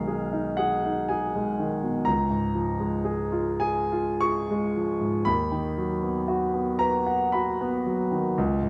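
This is a classical romantic nocturne for solo piano, a short fragment of roughly 8.7 seconds cut from a longer piece, with a dreamy, serene mood. It moves slowly in 3/4 at around 48 to 63 BPM, and the rubato lets the pulse breathe freely. The grand piano is the only voice throughout, warm and polished, sitting up front with a present, long-sustaining tone across a range from B1 up to C#6. The harmony drifts from G#m/B to C# at 2.1 seconds and then to B/D# at 5.3 seconds. A moderate recital hall reverb surrounds the instrument, giving it a gentle sense of space.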